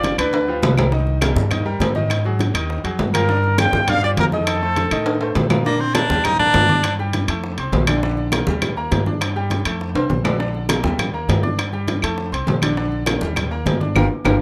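Salsa at a brisk 202 BPM in 4/4, this sunny, danceable clip is cut from a longer piece and moves through a chord sequence that settles into a repeating cycle of Ebmaj7, G5, F and Bb in its second half. A mellow trumpet section with light vibrato sits up front for the melody, heard briefly at the opening and again from 3.1 to 5.3 seconds, before a forceful baritone saxophone with a smooth top takes a short solo line from 5.7 seconds. Underneath, a brilliant grand piano with long sustain and audible action noise carries the accompaniment throughout, while a dark, woody pizzicato upright bass anchors the low end. The percussion blends thick-skinned, low-tuned congas and soft-handed bongos set back in the background with ringing metal-shell timbales and vintage, band-limited claves. Drum fills punctuate the groove, a band accent lands at the very end, and the whole has the rough feel of a home demo in a small room.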